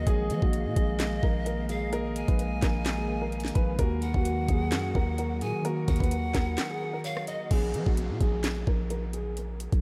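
A knocking trap drum kit sits up front in this brooding, melancholic hip hop fragment, its sharp snare, metallic hi-hats, handclaps, rim clicks and crash cymbal riding a half-time feel at 129 BPM in 4/4 with a tape-warm, produced edge. Beneath it, a growling, buzzy 808-style bass hits with a fast attack and decays, also placed close to the listener. A dark, mellow baby grand piano carries the melody with long sustain, softened by a low-pass filter and a diffuse ambient delay, while a breathy, reedy pan flute adds a higher second line with vibrato and chiffy, tongued articulation. In the background, soft electric-piano-like synth keys with chorus and a slow-blooming airy pad with a detuned, noise-flecked texture hold the harmony from Bb7sus4 to Ebm. After a break at 6.6 seconds, the flute, keys and pad drop out at 7.5 seconds as the music settles on Bb5. An electronic downlifter and a filter sweep then carry the piano until it fades at 9.4 seconds, and the bass and drums continue through to the cut at 9.8 seconds, all in a light, digital reverb.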